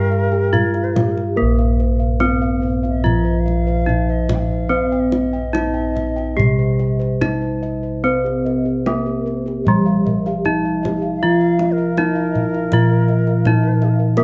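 In a straight 4/4 moving between 69 and 85 BPM, this serene, shimmering Javanese gamelan passage in Bb pelog barang is cut from a longer piece, with a kendang struck by hard hands entering at 0.3 seconds to give a tight, acoustic pulse. A bright, up-front bronze metallophone played with a horn mallet carries the melody over a wooden-mallet metallophone accompaniment and full, dry bossed gongs in the bass. Mellow gongs struck with padded beaters trace arpeggios, joined by a soft metallophone with padded disc mallets whose paired tuning gives shimmering beats from the background until 1.4 seconds and again from 8.0 seconds, while an airy bamboo bansuri with vibrato and slapback echo weaves a second line, all in light reverb.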